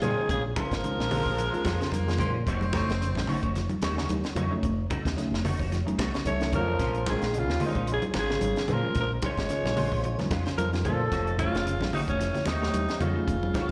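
A raspy, gritty alto saxophone leads this defiant, funky afrobeat passage in Bb minor at 111 BPM. Its plate-reverbed melody, shadowed by a clear trombone with scooped notes, drops out after 2.2 seconds and returns at 6.3 seconds, while a punchy baritone saxophone adds a brief second line from 1.1 to 3.5 seconds. Underneath, an envelope-filtered fingered bass, a dry cocktail kit with a high-tuned snare and punchy kick, and hard-hand congas with a thin, vintage skin drive a swung sixteenth-note groove. Two dark, clean semi-hollow guitars, one playing very quiet arpeggios and the other chorus-treated stabs, share the harmony with a worn, slightly out-of-tune tine electric piano through a phaser as the chords alternate between Bbm9 and F7b9b13, all heard through a venue's PA in a recital-hall space.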